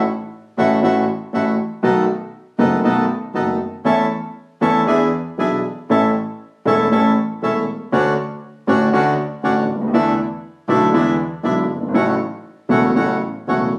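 From the first moment, a dark, mellow concert grand piano sits up front with deep bass, a boxy tone and long sustain, playing accompaniment beside up-front, reedy bandoneon stabs, while a single bowed double bass, warm and soft-attacked, pure and floating sul tasto, hovers in the background in this elegant, nostalgic tango in A major at 119 BPM with a rubato feel, moving from F#m7/A through B7 and Dmaj7 to settle on A6 at 11.9 seconds, captured on a phone in a large studio with moderate reverb and compression as a brief slice of a longer piece.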